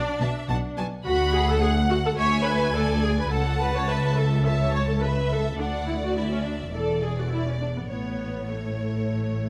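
Lively and cheerful, this quick classical-period string orchestra movement in A major at 105 BPM features a focused violin section carrying the melody over a second violin line, with a smooth, even viola accompaniment, close cellos and an expressive double bass section grounding the bass, all moving from Bm7 through E7 to a resolving A chord at 7.9 seconds in a moderate recital hall reverb.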